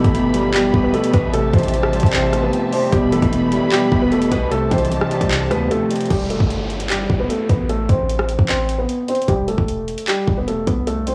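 A half-time trap beat from an up-front, tape-tinged electronic kit, with a hard-clipped kick, metallic hi-hats, handclaps, rim clicks and crash, drives this brooding, melancholic hip hop excerpt, anchored by a deep, boomy, sine-like 808-style bass. A soft, felt-muted upright piano carries the intimate, filtered melody throughout, while a dark, slightly broken-up, fingered electric guitar provides accompaniment and a lush, woody bowed string section with vibrato holds sustained chords, both until 6.1 seconds. After that, an electronic downlifter sweeps in until 9.3 seconds, all within a blown-out, overdriven recording with light reverb and studio ambience.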